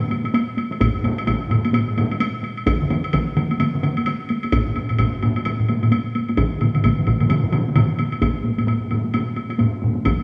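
A heavy-stick taiko ensemble in a small room leads this powerful, driving Japanese traditional taiko piece, entering at 0.8 seconds and sounding the boldest of the drum parts. It moves at 130 BPM in 4/4 with a light swing on the sixteenths. A second taiko ensemble struck with hard sticks sits close and present from the opening, while a solo taiko part, also played with heavy sticks, comes in close and dry at 0.8 seconds. A third hard-stick ensemble joins at 2.7 seconds, sounding distant and set in a large room yet pushed up front. Beneath the drums, a woody, vintage, band-limited woodblock ticks quietly throughout. The whole is framed by a lush scoring-stage reverb blended with small-room ambience, and this cut from a longer work shifts into a new section at 8.2 seconds.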